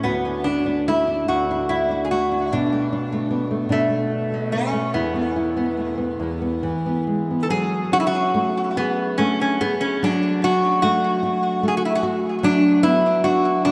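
A metal-body resonator slide guitar carries a wistful, tender Celtic slow air from the start, its bright, nasal slide tone touched with subtle chorus and delay, over fingerpicked nylon-string guitar with audible finger squeaks, both up front in 3/4 at a rubato 68-77 BPM, moving from D through Bm7 and Esus4 to F#madd9 and closing on Bm/F#, all soaked in a dreamy cathedral reverb with a 4.8 s decay.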